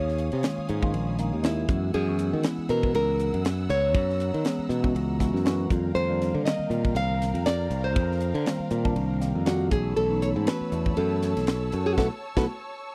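A swung sixteenth-note groove from a crisp, punchy fusion drum kit with a high-tuned snare and a bright, growly fingered electric bass drives this nocturnal electric jazz fusion excerpt, where a small, fingerpicked nylon-string guitar with audible finger squeak and slapback echo carries the melody over a worn, slightly out-of-tune tine electric piano with phaser and lush, bowed symphonic strings sustaining suspended ninth chords, all in a dry, close 1970s-style studio sound, before the band hits an accent at 12.0 seconds.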